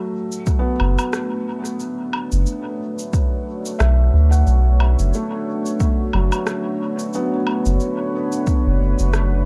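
A round, deep sub bass sits up front beneath a punchy, overdriven electronic kick in this meditative, spacious ambient dub excerpt at 90 BPM in B minor, where a felt-muted upright piano with audible action noise plays mellow, intimate arpeggios through tape echo over a dark, detuned sawtooth pad holding a sustained Bm9 chord with chorus, while electronic cabasa, woodblock and rim click drift in from 0.3 seconds on dub echo.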